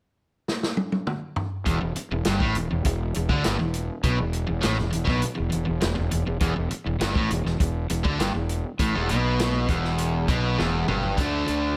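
A straight 4/4 classic rock groove at 101 BPM opens with a vintage drum kit playing a fill from 0.5 seconds, its punchy kick, medium-tuned snare, toms and hi-hat sounding natural and rolled-off in a small room. At 1.7 seconds a swaggering, confident riff on E5 kicks in, carried by a biting overdriven guitar up front, a darker crunchy overdriven guitar behind it, and a punchy fuzz-laden fingered electric bass. After another drum fill, a boxy, shimmering, octave-doubled twelve-string acoustic guitar is picked quietly in the background over a D chord from 11.2 seconds, just before this excerpt from a longer piece cuts off.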